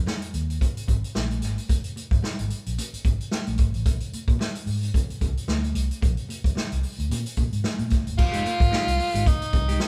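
A sly 111 BPM funk groove with a light 16th-note swing opens on a foam-muted, round electric bass and an up-front vintage drum kit with dark cymbals and a tight kick, ringing high-tuned congas sitting in the background, moving from a chordless opening to a Bb9 at 3.9 seconds before a warm, subtone, vibrato-laden tenor saxophone and a twangy, scooped clean electric guitar enter over Fm9 at 8.2 seconds in this short cut from a longer live-room piece.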